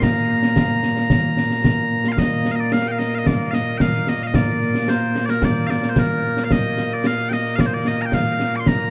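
Bathed in a huge, lingering ambient reverb and heard from further back in the room, this brief cut from a longer piece of proud, stirring Scottish pipe music in Bb major moves at 111 BPM in a straight 4/4, with piercing, continuous solo bagpipes carrying the melody up front from 0.0 to 8.9 seconds over an acoustic concert snare and bass drum with bright cymbals.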